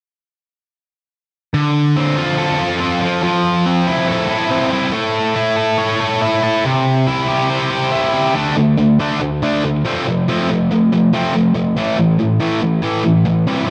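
Rock with a moody, restless air, built around a single sludgy, overdriven electric guitar that plays alone from 1.5 to 13.7 seconds. The picked, double-tracked guitar sits up front, colored by analog delay, moving through Dm7, Fmaj7, A and C before shifting at 8.4 seconds to D5, F and A5. Light reverb and a dark production frame this short cut from a longer piece.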